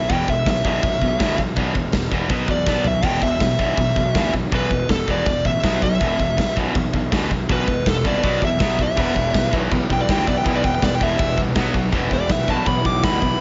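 Heavy metal in E minor at 162 BPM, dark and relentless, with a dark-toned, high-gain lead guitar soloing across the whole 13.4-second excerpt over two picked rhythm guitars playing the riff low in the background and a growly, fuzz-laden fingered bass. An up-front acoustic kit with a punchy kick, medium-tuned snare, china and crash cymbals and toms rings in a bright stone room, breaking into a brief fill at 2.7 seconds as the chords shift between E5 and B5 power chords. At 9.0 seconds the harmony moves to E minor as a very quiet, lush bowed string section with woody vibrato and a double-tracked overdriven guitar riff join, all in light reverb with a rolled-off top end.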